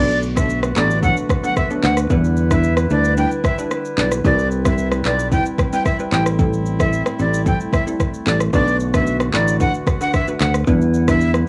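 Hypnotic and sultry, this short afrobeats passage moves with a straight, steady pulse under a cycle of minor-seventh chords that opens on Bm7 and passes through Cmaj7. A breathy, bright jazz flute carries the melody up front, its crisp, chiffy attack and vibrato coloured by cassette tape and tape echo. Beneath it, a growly, punchy fingered electric bass sits close and direct, while the afro-pop drum kit, electronic and produced with a deep kick, rim click, handclaps and shaker, comes in at 0.1 seconds. In the background, a detuned analog pluck with a fast, decaying filter attack and chorus shimmer adds accompanying colour, and a woodwind section holds tight, classical-style sustained chords with light vibrato. The whole piece has the dry, intimate feel of a home cassette recording in a small room, with little reverb.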